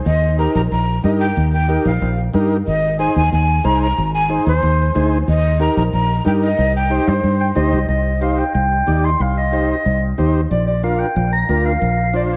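Latin at a brisk 184 BPM in C minor, this fiery, passionate fragment sets a breathy, up-front jazz flute melody over a punchy, foam-muted fingered electric bass and a reedy vintage combo organ with heavy vibrato, until a mellow subtone clarinet with scooped notes enters at 7.4 s and takes a solo from 7.9 s, the room heard from further back through a moderate plate reverb.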